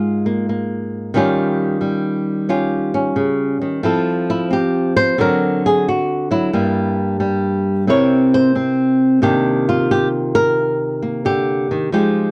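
Solo jazz at a cool, late-night 89 BPM with a 67% swing, this short cut from a longer piece features a single fingerpicked acoustic flamenco guitar, up front and warm in a dark production with light reverb, moving through chords like Eb9, Fmaj7 and Daug7 before settling into C minor at 9.2 seconds on a Cm9.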